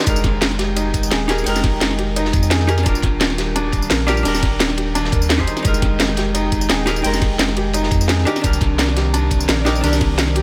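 A dry, close-sounding excerpt of dreamy, lush liquid drum and bass at 172 BPM in F dorian, moving through Fm11, Ebmaj7 and Cm9. A dark, clean hollow-body jazz guitar with delay and a felt-muted upright piano playing mellow arpeggios through sampler grit and digital delay sit over an airy, breathy pad with chorus and phaser in the background, while a round sine sub bass enters at 0.1 seconds. Beneath them are a knocking electronic kick, an up-front electronic kit with cracking snare, bright hats and tambourine, and a gritty, saturated breakbeat kit with dark, filtered cymbals tucked behind.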